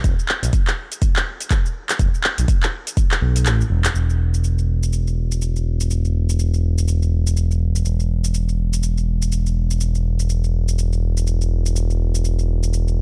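A smooth, gliding synth bass anchors this driving afro house excerpt at 123 BPM from the very start, its detuned sawtooth-and-triangle tone sitting up front with portamento, vibrato, a moving notch, tube saturation and sidechain pumping across the low register. Beneath it, a layered deep house kit of handclaps, metallic hi-hats and shaker carries a 16th-note swing with overdrive and studio ambience, while a deep, tape-warm electronic kick punches up front until 3.1 seconds. From 3.9 seconds a new section continues with the mellow bass and the kit through to 13.0 seconds, all set in a digital ambience.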